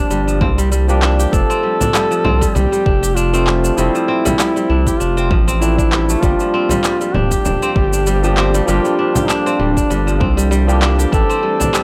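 Organic downtempo in a meditative mood, this short cut from a longer piece sets a mellow duduk melody with vibrato over ringing, fingerpicked kora arpeggios and a barky, background tine electric piano, both carried on tape echo, while a round, up-front analog bass pumps beneath them alongside an overdriven electronic kick, electronic cabasa and handclaps and a deep, saturated frame drum fill out the lightly swung groove, and an ethereal, airy pad steals in with very quiet sustained chords at 7.3 seconds, all captured as a dry, gritty hardware recording.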